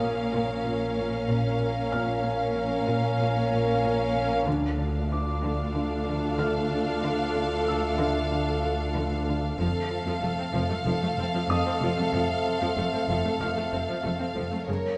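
Lush, vibrato-laden symphonic violins carry the melody through this ominous, mysterious suspense film cue at 94 BPM, shadowed by an intimate sul tasto chamber violin line, while smooth violas, a close, focused cello riff and a background cello part over bowed double basses move under distant, mellow French horn chords from Bbm to Dm at 4.5 seconds and F at 9.6 seconds, a soft felt-muted upright piano with audible action noise adds texture, and a roomy concert hall reverb surrounds this excerpt cut from a longer piece.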